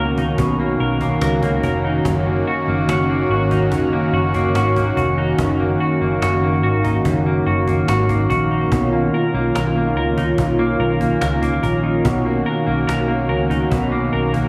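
A straight 4/4 pulse from a snappy cajon with snares, entering at 0.2 s, drives this floating, ethereal dream pop excerpt, where a smooth, warbling analog pad holds sustained chords up front, a clean, compressed hollow-body electric guitar picks arpeggios through subtle chorus and tape echo, and a dark, round, foam-muted electric bass anchors the low end, set in a moderate plate reverb and studio ambience.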